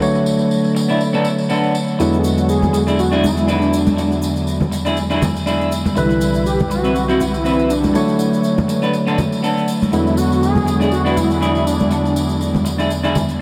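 A bright, barky tine electric piano opens this groovy, sunny nu-disco excerpt up front at 121 BPM, joined from the start by a clean, picked semi-hollow electric guitar riff dressed in lush chorus, a low-pass filter and analog delay, while an acoustic tambourine sits quietly underneath. The electric piano carries the accompaniment with a subtle chorus and analog delay, moving through Bm7, E7 and Cmaj7 in E mixolydian over a lightly swung sixteenth-note feel. At 2.0 seconds a thick, nasal unison lead enters with the melody, its detuned sawtooth tone warbling with vibrato and a cassette-tape colour, alongside ringing cabasa and congas played with soft hands in the background. The lead drops out at 12.4 seconds as the rest carries on to the cut. The whole mix is soaked in a huge ambient reverb that gives the groove a dreamy glow.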